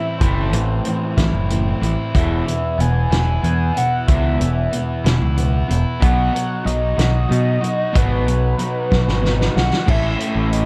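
A screaming, guitar-like synth lead carrying the melody with phaser and slapback echo opens this wistful yet upbeat indie rock excerpt in 6/8, alongside a crunchy overdriven guitar and a hollow-bodied semi-hollow guitar with subtle chorus, both playing bright, picked riffs. A growling, overdriven picked bass and a loose, saturated drum kit with a fat snare, punchy kick and dark cymbals join at 0.2 seconds, sitting up front as the chords move from Am through E and B toward A. A drum fill from 8.9 to 9.9 seconds closes the passage, all within a dark production with light reverb.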